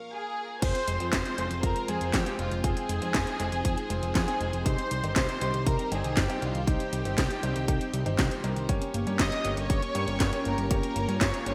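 Nostalgic, danceable italo disco in F minor at 119 BPM, this excerpt opens on a lush string machine and a dark, woody violin melody with digital delay before, at 0.6 s, a fat, saturated analog bass, a punchy tape-kissed kick, an up-front house kit with cracking gated snare and handclaps, a warbling lo-fi pluck arpeggio and bright piano stabs join in, all set in a bright 1980s-style hall over Fm, Cm and Gdim chords.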